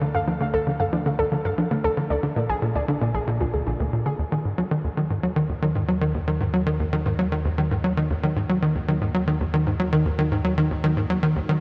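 Soaked in huge ambient reverb, this dreamy fragment of ambient, sequencer-driven space music moves at 115 BPM in a straight 4/4 with an expansive, hypnotic mood: a tight, punchy sawtooth sequencer bass drives its riff up front through lush chorus and tape echo over a vintage, evolving analog drone in the background, while a dusty, lo-fi pluck with a ring-modulated, warbling tone spins chorused arpeggios into tape echo and shimmer reverb until 4.2 s, when the harmony moves from Dm and Bb7 into Eb minor.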